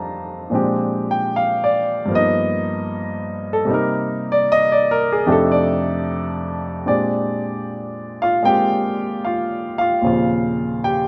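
A natural-toned grand piano sits up front in this relaxed, playful solo jazz passage at 76 BPM in 4/4, swinging its eighths in Bb mixolydian across a range from Eb2 to Bb5. The harmony moves through rich extended chords such as F13, Bb13, G7alt and Cm7, with a new section arriving at 6.9 seconds and an Eb13 landing at 10.0 seconds. Light reverb lends a gentle sense of space to this short cut from a longer piece.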